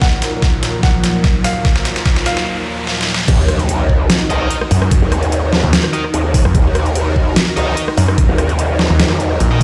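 Played through a big sound system in a bare stone room with light reverb, this chaotic, heavy wobble dubstep cut in Eb minor runs at 147 BPM with a swung, half-time feel. A clear baby grand piano melody with delay sits in the background over a lush supersaw pad with phaser and sidechain pumping, a soft, breathy chorused pad, a riser and noise sweep, and an overdriven, up-front kit of deep snare, bright hats and knocking kick that rolls through drum fills into a brief break. At 3.3 seconds the drop lands with an impact as a wobbling, formant-filtered growl bass enters, joined by picked distorted electric guitar stabs with delay at 4.3 seconds and a snarling, detuned sawtooth bass at 4.7 seconds.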